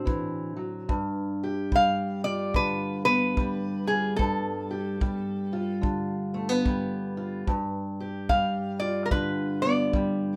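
A slow, swung 4/4 at 73 BPM gives this short cut of laid-back, soulful acoustic country blues its easy gait, with a punchy, natural kick drum played with brushes in a small room from 0.1 seconds. A dark, boxy parlour steel-string guitar fingerpicks the accompaniment up front, moving from D7 to G7. At 1.8 seconds a bright, metallic, nasal lap resonator guitar enters with a fingerpicked slide melody, also up front, all set in light reverb.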